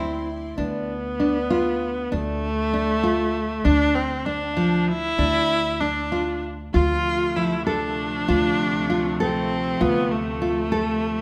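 Set in a straight 5/8 at 196 BPM counted in eighths, this contemporary chamber piece in D dorian feels hypnotic and urgent, with a fingerpicked nylon-string guitar weaving full-bodied arpeggios beneath a focused, up-front bowed viola carrying a second line with vibrato. A woody pizzicato upright bass holds a thumping D2 throughout, while a chamber string section adds smooth, earthy sustained chords briefly at the opening and again from 6.8 seconds, as the harmony moves from Dm to F/D. A moderate scoring-stage reverb gives the ensemble a sense of space, and the recording is cut from a longer piece.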